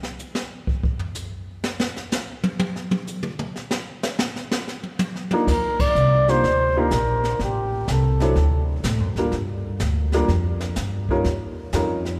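A brushed drum solo with dark cymbals, a high-tuned snare and a boomy kick opens this relaxed, sophisticated excerpt of small-group swing and bop at 125 BPM, before a boxy upright piano with short sustain slips in at about 5.3 seconds, followed at 5.5 seconds by a thumpy, woody pizzicato upright bass and a breathy, mellow flugelhorn with light vibrato on an Ebmaj9 chord in Eb major, with a band accent just after; the horn's brief melody ends at 8.7 seconds while bass, piano and drums carry on through Am7, D, Gm7 and Eb7, the whole group set in a long, church-like reverb.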